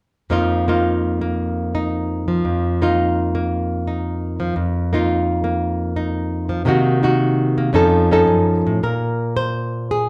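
Solo jazz in 4/4 at 113 BPM, a moody, late-night excerpt cut from a longer piece, with a swung, rubato feel. A single nylon-string guitar, fingerpicked and classical in tone, sits up front from 0.3 to 10.1 seconds, ranging from F2 to C5 and moving from F7sus4 through Cm7b5 and F7b13 before settling on Bbsus2 at 8.8 seconds. A large, wet studio reverb surrounds the guitar, giving the live room recording a spacious glow.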